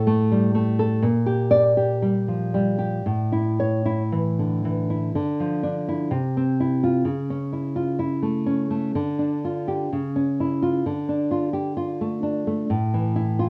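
A dark, full-bodied nylon-string guitar carries this short romantic fragment alone, thumb-plucked and sitting up front with a deep classical character. The mood is intimate and melancholic, the playing unfolding in 2/4 with a free, rubato feel. The opening phrase moves from a chordless start through Gm/Bb to A, and at 5.2 seconds a second section settles onto Dm, then C and A/C#. Later the harmony turns through Dm, C#m and Dm again before resting on a bare A5 chord near the close at 12.7 seconds. The guitar sits in a reverberant studio space, yet the overall sound is a rough home-demo mix with the grain of cassette tape.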